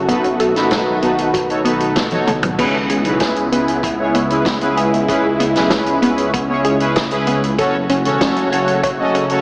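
This synthwave excerpt moves at 96 BPM in C# minor with a driving, nocturnal mood, the whole mix bathed in dreamy plate reverb yet heard through a small-speaker filter. A swirling phased analog pad holds sustained chords across the full length, pumping against the sidechain. Beneath it sits a deep, rumbling detuned saw bass, dark and beating with tube saturation. A lush unison pluck spins arpeggios in the background through tape echo, its sound shaped by a filter sweep over the first 2.6 seconds, while a bold, nasal analog synth brass delivers up-front stabs with chorus and vibrato. A punchy kick tucked in the background and a vintage drum kit with dark cymbals and a medium-tuned snare keep the beat, and a drum fill at 2.1 seconds leads into the second section, where the harmony shifts from B7 to C#m7 before settling on F#m at 7.6 seconds.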